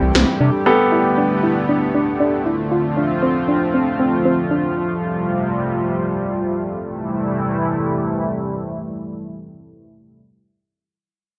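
Upbeat, bright pop, cut from a longer piece, rests on a shimmering, retro pulse-width pad whose detuned, chorused chords sustain until 10.2 seconds over a C6, Gadd9, Dm7, Fadd9 progression. A clear, polished baby grand piano plays accompaniment until 2.4 seconds, a deep, round analog bass sounds only briefly at the start, and a soft, dark pluck with chorus and tape echo spins arpeggios until 4.7 seconds. A filter sweep runs through the opening section, and the dry, gritty recording carries light reverb.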